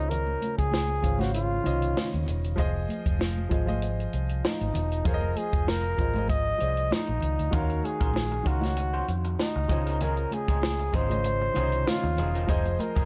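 A dark, reverb-soaked production frames this bittersweet, silky slice of lush 1970s-style soul at 97 BPM in 4/4, with a light sixteenth-note swing. Up front, a mellow flugelhorn carries the melody in jazz style with light vibrato and scooped notes, over a natural-sounding grand piano moving through Dbmaj9, Fm7 and Ebm9, a round, foam-muted vintage electric bass, and a dry cocktail drum kit with a punchy kick and high-tuned snare. Ringing congas played with hard hands sit in the background, and at 7.5 s a twangy, slightly broken-up electric guitar through a small old amp adds a lo-fi riff bathed in spring reverb.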